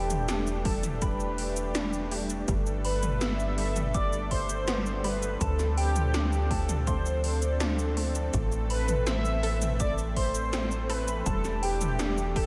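Nocturnal and driving, this synthwave excerpt opens with a dark, brassy synth melody with vibrato and diffuse delay, a pure FM bell line drifting high in the background, a thick, detuned unison pad holding pumping chords, and a punchy sawtooth sequencer bass sitting up front. Eighties-style electronic drums with metallic hats, shaker and gated-reverb snare and toms enter at 0.1 seconds, a round analog pluck adds background arpeggios from 0.3 seconds, and a tape-warm electronic kick lands at 0.7 seconds. The dreamy mix is soaked in moderate cathedral reverb as the chords move through Em7, Gadd9, Dm7 and Am.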